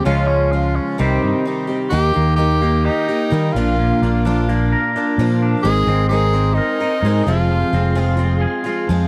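An edgy tenor saxophone with light vibrato carries the melody up front in this reflective, dusty rock excerpt at 129 BPM, over a punchy, amped fingered bass, a shimmering octave-doubled twelve-string acoustic guitar with finger squeak, a clean, twangy electric guitar riff and, from 1.9 seconds after a brief break, a very quiet reedy tonewheel organ on a slow rotary speaker holding sustained chords, all captured in a dry, close 1970s-style studio sound.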